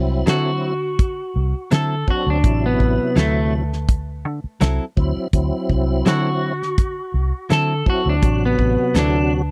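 A lightly overdriven tonewheel organ through a slow rotary speaker with chorus vibrato and a round, foam-muted fingered electric bass open this rollicking, gritty straight-eighth soul blues excerpt at 83 BPM in D mixolydian on a D9 chord, joined at 0.3 seconds by a twangy, slightly broken-up electric guitar melody bathed in spring reverb, compressed clean direct-recorded guitar stabs, and an airy, polished 70s drum kit with a fat snare and tight kick sitting up front in a dry, close 1970s-style studio sound.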